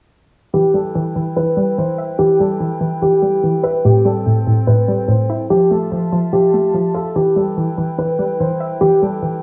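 A dark concert grand piano carries the melody up front, its mellow, vintage tone and short sustain shaded by a low-pass filter and a digital delay as it moves between G4 and C5. This cold, menacing hip hop excerpt runs at 145 BPM in 4/4 with a half-time feel, set in E phrygian and tuned to A4 = 439 Hz. Beneath it, a hollow square-wave pluck supplies bouncy, detuned accompaniment from A2 to E5, with a fast attack, short decay, filter sweep, chorus and a bright, forward edge. A small flute group sits quieter in the background, holding pure, tongued chords with vibrato between C4 and A5. All three parts play together from 0.5 to 9.4 seconds over a progression of Em, Am7, Fmaj7 and back to Em. A light reverb and small room ambience surround the mix, which is softened overall by a low-pass filter.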